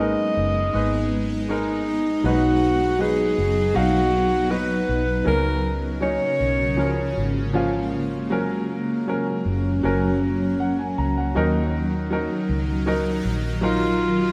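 Emotional and tender, this pop fragment cut from a longer piece features a breathy, mellow alto saxophone melody with light vibrato and scooped notes, heard from 0.0 to 7.1 seconds and again at 13.6 seconds, over a clear baby grand piano accompaniment, a shimmering, ethereal ambient pad holding sustained chords with chorus and an octave-up glow, and a dark, round, foam-muted electric bass, set in a lush, wet hall reverb within a rough home demo mix as the chords move from G#m through B and C#6 to F# and D#m.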